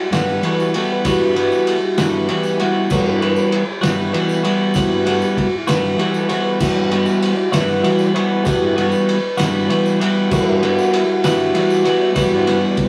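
A reedy vintage combo organ leads this dark, hypnotic psychedelic rock excerpt, holding sustained chords and taking a solo across the full 12.9 seconds. It rests on an Emadd9 chord in E minor, moving at 65 BPM in a straight 6/8 feel. From 0.1 seconds, a clean, compressed twelve-string electric guitar sits up front with a picked riff. Beneath it, a picked electric bass is thickened by fuzz overdrive. A cloth-damped, thuddy drum kit adds a fat snare, a tight kick and dark, muffled crash and ride cymbals, its lo-fi, gritty sound rolled off at the top, while a jingly tambourine sits distant in the background. The whole take has the rough character of a rehearsal-room recording, with warm saturation and a moderate stone-room reverb.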